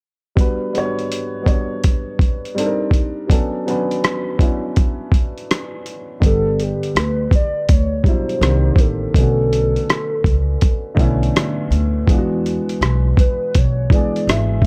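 Lo-fi hip hop at 82 BPM in 4/4 with a 64% swing on the sixteenths, melancholic and reflective, cut from a longer piece and tuned to A4 = 445 Hz. A dark, mellow upright piano with cassette-tape grit and a low-pass filter sits up front beside a compressed, pitched-down sampler-style drum kit of overdriven thumpy kick, hi-hat and rim click, both starting at 0.4 seconds over Gmaj7, Cm9 and Bm9 chords. At 6.2 seconds a woody pizzicato upright bass joins, and a warbling, nostalgic lead of detuned triangle and sawtooth tones with chorus, tremolo and vibrato enters just after, with an E9 chord arriving late in the passage within a dark digital ambience.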